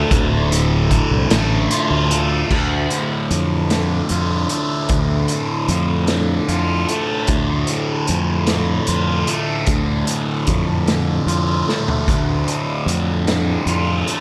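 A bright, double-tracked fuzz guitar sits up front in this short psychedelic rock excerpt, its compressed, picked riff carrying distortion and a phaser as it ranges from D2 to F4. Beneath it, a dark, round fingered electric bass adds overdriven fuzz, playing low in the register from D1 to F2. A vintage acoustic drum kit with a pumping small-room character fills out the groove, with a punchy kick, medium-tuned snare, hi-hat, toms, and dusky crash and splash cymbals, all with a rolled-off top. The piece moves slowly in 6/8 at 50 dotted-quarter beats per minute in D minor, settling on a D minor chord from the start, with a brief opening passage giving way to the main section at 2.5 seconds. A drum fill at 11.7 seconds stands out before the clip is cut off at 14.2 seconds. Light reverb binds the parts together, and the mood is hypnotic and trippy.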